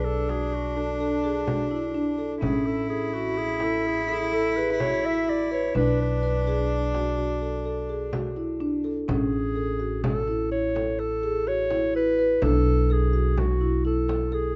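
Contemporary instrumental chamber music in 7/4 at 126 BPM, this excerpt from a longer piece feels pensive and restless, with a straight pulse and a dark, warm production with light reverb. A classical-style solo clarinet carries the melody up front, while a bowed cello plays a clear, nasal second line sul tasto with a soft attack, floating close beside it until it stops at 8.9 seconds. A marimba played with medium mallets spins arpeggios, and an upright bass, plucked on gut strings, sits up front with a woody, thumpy low end. A small frame drum struck with hard hands adds bright percussion in a live room. The harmony moves between Bm7 and Amaj7 colours, and a new section begins at 9.1 seconds on Amaj7 before returning to Bm7.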